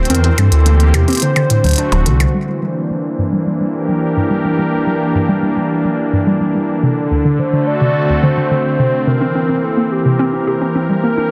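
Glitchy and cerebral, this IDM excerpt in G melodic minor moves at 107 BPM in a straight 4/4. It rests on a smooth, up-front analog pad holding sustained chords with chorus and 12-bit sampler grit, while a lo-fi, mellow pluck runs arpeggios through chorus, cassette-tape wobble and dub echo. A deep, rumbling detuned saw bass and clicky electronic hi-hats with percussion blips drive the opening until 2.3 s, when the harmony moves from C7 and D7 onto Gm6 and a filter sweep begins on the pluck, and a nostalgic lead with vibrato, heard briefly at the start, returns at 6.8 s, the mix sitting in a moderate plate reverb and a dense, heavily limited master.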